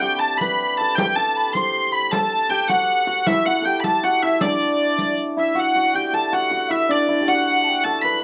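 A rustic, festive medieval dance in 6/8 at 105 BPM counted in dotted quarters, set in D mixolydian and cut from a longer piece. A rich, smooth hurdy-gurdy carries the melody up front, its wheel-bowed, keyed tone even and played by one performer across the full 8.2 seconds. A mellow hammered dulcimer sits alongside it as a second line, shimmering and ringing, while a tenor recorder with a pure wooden tone, crisp chiff and expressive straight delivery adds another second line further back. A riq with bright, band-limited jingles and a vintage character joins at 0.4 seconds and drops out at 5.3 seconds, just before the music moves into a new section at 5.6 seconds. The whole is heard in a small, reverberant room with a rough home-demo mix.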